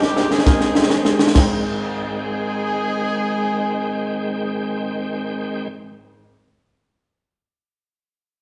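Uptempo gospel in Ab major at 135 BPM with a swung 4/4 feel, reverent and soulful, opening on an Abmaj7 chord as a crisp drum kit with a high-tuned snare and tight kick plays a fill with crash, kick and snare before dropping out at 1.5 seconds. A shouting tonewheel organ, lightly overdriven with fast rotary and chorus vibrato, holds sustained chords up front, while a distant, punchy horn section carries the melody in octaves and a worn grand piano accompanies in the background until 6.3 seconds. The band sounds live in one large room with a wet reverb and a dark top end, and the clip is cut from a longer piece.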